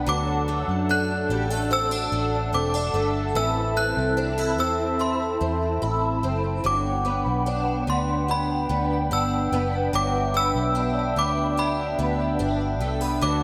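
A chiming, inharmonic FM synth carries the high melody, its ringing notes treated with ensemble chorus, phaser, tremolo and delay, floating over a blissful, dreamy dream pop passage at 73 BPM in G major. Beneath it, a bright, octave-doubled twelve-string acoustic guitar picks shimmering arpeggios through chorus and delay, a hollow, flute-like pad sustains soft chords with chorus, and a round, foam-muted vintage electric bass sits dark and up front. The harmony moves from D to Am at 3.4 s and to Gmaj7 at 6.6 s, set in a lush hall reverb, in this short fragment of a longer piece.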